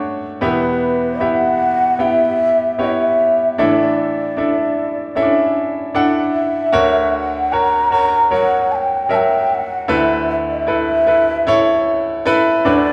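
Pop at 76 BPM in a straight 4/4, hopeful and tender, this short piece cut from a longer work pairs a baby grand piano with an end-blown bamboo shakuhachi playing the melody from 0.4 seconds. The piano sits up front with a brilliant, polished tone, short sustain and audible action noise, moving through Em, Asus4, F#/D and Asus2/D, while the shakuhachi sounds breathy and hollow, its tongued notes carrying chiff and vibrato. The two play live together in one room, wrapped in a wet stone reverb, with the second section beginning at 6.7 seconds.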